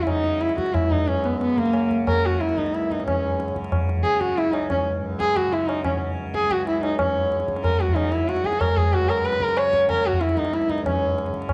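A single bowed sarangi sits up front with a woody, shadowed tone, carrying the melody from A#3 to C#5 with light vibrato, gliding portamento and the halo of its sympathetic strings. This meditative, introspective Hindustani classical passage, cut from a longer piece, is set in raga Bageshri on C# at 184 BPM in 3/4, and it gathers speed throughout. Beneath the melody, a mellow tanpura drone, softly plucked and buzzing with a shimmering edge, holds the ground from C#2 to C#3 at a lower level. A low-tuned tabla with a short ring enters at 0.1 s, sounding close and dry against the rest. The ensemble plays in a reverberant recital hall with a warm, dusky production, and the music moves into a new section at 7.0 s before the sarangi stops at 11.3 s.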